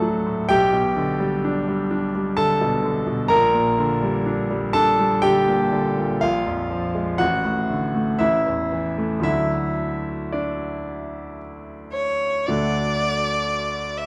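In a slow, rubato 3/4 at roughly 55-65 BPM, this romantic classical duo for violin and grand piano unfolds with a lyrical, warm mood in D major, tuned to A4 = 438 Hz. The bright grand piano plays alone until 11.9 seconds, carrying the accompaniment with a brilliant, polished tone and audible action noise. Its harmony moves from D through G/B to a darker G minor over B flat before settling back on D by 9.3 seconds. The rich violin then enters with a smooth, even, bowed melody in its upper register, coloured by vibrato, and sings until the fragment stops at 14.1 seconds. A recital hall reverb surrounds both instruments in a dark, warm production, with a faint mains hum underneath.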